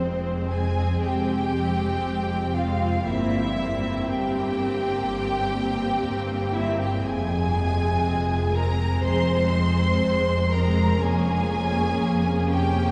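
In a rubato, slow-moving pulse, this melancholic, yearning excerpt of a romantic classical movement for string orchestra sets a focused, rich first violin section singing the melody high above a smooth second violin line, a clear viola section close at hand, and a foundation of smooth cellos and expressive double basses, all bowed with vibrato and heard from further back in a cathedral's long, wet reverb as the harmony moves from F minor through C7/G and back before settling on Bbm/F near 11.0 seconds.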